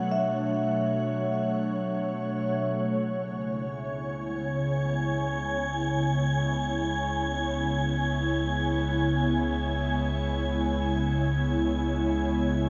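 A lush, wet hall reverb with a long decay surrounds this spacious, reflective ambient excerpt, which drifts in free time. An ethereal, detuned pad sits up front for the whole 12.7 seconds, its slow-attack sustained chords thickened by ensemble chorus and moving from Bm7 to C#m7 at 2.6 seconds. Soft-mallet vibraphone arpeggios ring with a metallic, mellow glow and slow motor vibrato through a diffuse ambient delay, then fall away at 2.8 seconds. Above everything else, a breathy, wind-like tuned noise texture hovers high in the register throughout. From 2.6 seconds a round, deep sub bass fades in on a sustained C#, anchoring the second chord.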